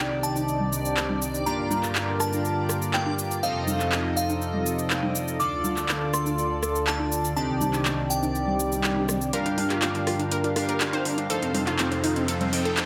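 A lush hall reverb surrounds this emotional, bittersweet progressive house excerpt in G minor at 122 BPM, where a crystalline FM bell melody with chorus and tape echo floats over a smooth sawtooth pad, glossy up-front polysynth stabs carrying vintage 12-bit sampler grit, and a faint reversed granular texture. An overdriven deep house kit with metallic hats, cabasa and handclaps sits up front, while dry analog congas and rim click stay in the background. A swell arrives at 8.5 seconds, and from 9.3 seconds a punchy detuned unison pluck plays arpeggios as the pad's filter sweeps through the build-up over Gm7 and F7.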